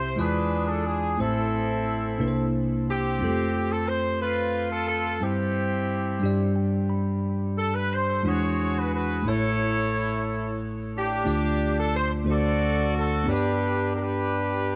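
Jubilant and hopeful, this gospel passage moves at 60 BPM in a straight 6/8, with the pulse felt in dotted quarters. It is cut from a longer piece. A tight, vintage-sounding horn section carries the melody between C4 and D5 in a pop style, its clear tone touched with light vibrato and tape echo. Underneath, a bell-like tine electric piano plays accompaniment from A1 up to B5, bright and clean through its built-in speakers, and slips in a short fill from 6.2 to 7.2 seconds. The harmony opens on E7b9 and Am, then travels through C9, F, C/G, G5, E9 and A before settling from Dm and D7 onto G. Both parts sit up front, set in a moderate scoring-stage reverb with a touch of small-room ambience.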